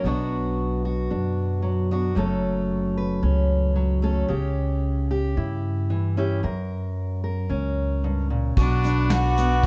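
In a straight 4/4 at 112 BPM, this reflective, wistful acoustic folk excerpt in B minor opens with a full-bodied fingerpicked steel-string guitar and a woody, thumpy pizzicato upright bass up front, moving through Bm, F#m, C#dim and F# before, at 8.6 seconds, a rich, earthy bowed fiddle with light vibrato sounds from a distance alongside a reedy accordion holding sustained chords, a soft brush kit with a tight kick and rolled-off top, and a grainy tube shaker tucked in the background, all in a dark production with light reverb.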